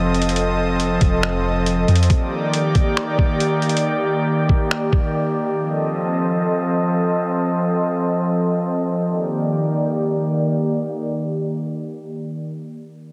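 An airy, breathy pad with chorus, sidechain pumping and a sweeping low-pass filter opens this blissful, floating cloud-rap excerpt in Eb lydian at 138 BPM in a half-time feel, alongside a deep, round 808-style bass that drops out at 2.1 seconds, joined a moment later by a muffled, pitched-down lo-fi sampler drum kit of finger snaps, hi-hat and thumpy kick that plays until 5.0 seconds, as the detuned pad drifts between F7 and Ebmaj7 under light reverb and a heavily compressed, radio-like sound.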